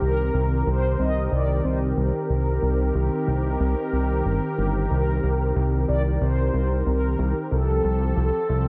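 A thick, detuned sawtooth bass sits up front with a fast attack and decaying notes, driving this cinematic synthwave excerpt in a straight 4/4. A smooth, soft-attack analog pad holds sustained chords with chorus, moving from Eb6/C to Cm7 at 4.9 seconds and Fadd9/C at 7.5 seconds, while a mellow, round synth brass carries the melody with a dark, brassy tone, vibrato, chorus, cassette-tape colour and tape echo. All three parts play throughout, set in a dreamy mix soaked in lush hall reverb.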